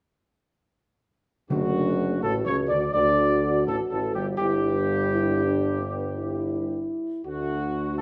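Classical brass music, regal and majestic, in which a dark, smooth-topped trumpet section carries the melody up front over sustained chords from a soft-attacked French horn section and a clear, lightly vibrato trombone section in the background, with a warm solo tuba on the bass and hard-mallet timpani striking articulately from 1.5 to 2.5 seconds, all set in a moderate recital hall reverb as the harmony moves from D/F# through G6 to D in this passage cut from a longer piece.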